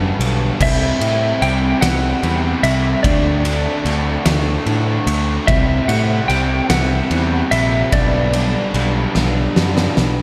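Post-rock in a slow, straight 6/8 at 49 BPM, brooding and cathartic, this excerpt sets a twangy, clean lap steel slide melody in diffuse ambient delay over a distorted electric guitar riff and a raw garage guitar with overdrive and lush chorus in the background, anchored by an up-front fuzz bass and an oversized low-tuned drum kit with a fat snare, punchy kick and dark cymbals pumping in a big room that enters at 0.2 s, moving through Gmaj7, C, D7 and Gmaj7/B with a drum fill from 9.1 s, all soaked in a dreamy hall reverb.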